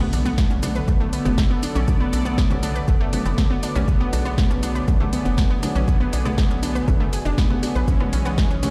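A very quiet electronic impact opens this dark, cinematic melodic techno fragment, lasting until 1.9 seconds as an evolving, resonant sawtooth pad, a round, detuned analog pluck playing arpeggios and bold, brassy synth stabs all sound from the start. A tight, driving sequencer bass joins at 0.1 seconds, and a deep, overdriven electronic kick arrives up front at 0.4 seconds, setting a straight 120 BPM pulse in 4/4. A deep house kit of congas, hi-hat, shaker and a punchy snare, also overdriven and re-recorded in a small room, fills out the groove. The pad, pluck and brass carry chorus and sidechain pumping, with digital delay trailing the pluck and the brass, while the bass pumps along with them. The harmony in B dorian rests on Bm7 before moving to C#m near the end. A light stone-room reverb gives the whole thing the feel of a big sound system playing in a bare room.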